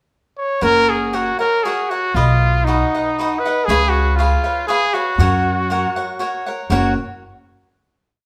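In a straight 3/4 at 119 BPM, this short, festive and romantic mariachi piece in F# major moves from a brief pickup through F#, B and C#7 back to F#, closing on a final chord at 6.7 seconds. A clear, classical-style trumpet with vibrato carries a motif-based solo melody up front from 0.4 seconds. Alongside it, equally up front, a bright, crisp picked cavaquinho strums sixteenths in open chord shapes, and a woody pizzicato upright bass plays root and fifth on the main beats, all heard as a band playing live together in a large studio with moderate reverb.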